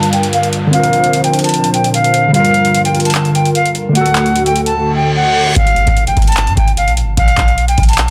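A reedy, airy jazz flute with vibrato sits up front in this dark, menacing trap excerpt, carrying the melody high in its range through a low-pass filter. Beneath it, warbling, detuned lo-fi synth keys with chorus and a hollow, soft pad with ensemble chorus lay down nostalgic minor-seventh and added-ninth chords under a filter sweep. An analog drum machine with a booming kick, metallic hi-hats and handclaps drives a half-time feel with a tape-warm tone. A reverse cymbal rises from 4.9 seconds into an electronic impact at 5.6 seconds, where the keys and pad drop out and a clean, deep sine 808-style bass enters in the background under starker open-fifth chords. Light reverb and a dense, heavily limited modern master keep the sound tight and loud.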